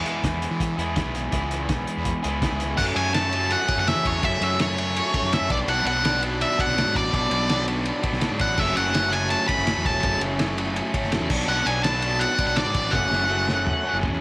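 Cool and restless, this indie rock excerpt moves in a straight 4/4 on a double-tracked, overdriven guitar riff, a round fuzz bass and a muffled, cloth-damped drum kit with a fat snare and dark cymbals. An octave-fuzz lead guitar with tape echo joins them up front at 2.8 seconds, and a drum fill arrives at 12.9 seconds amid light small-room reverb.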